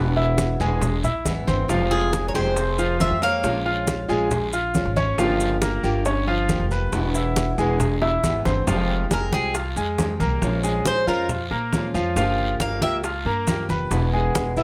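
A brilliant, long-sustaining concert grand piano plays arpeggios up front over a woody, thumpy pizzicato upright bass and a boxy fingerpicked archtop guitar. Close, dry low-tuned congas and soft-handed high bongos join at 0.2 s, followed by raspy guiro and grainy maracas at 0.4 s, in this danceable, nostalgic Cuban son and guajira excerpt at 138 BPM in F harmonic minor. At 1.9 s a metallic, double-strung Cuban tres states the melody, briefly shadowed by a full-bodied nylon-string guitar with audible finger squeak, and after a drum fill the tres returns for a bright solo from 9.1 s, all in a detailed, lightly reverberant sound.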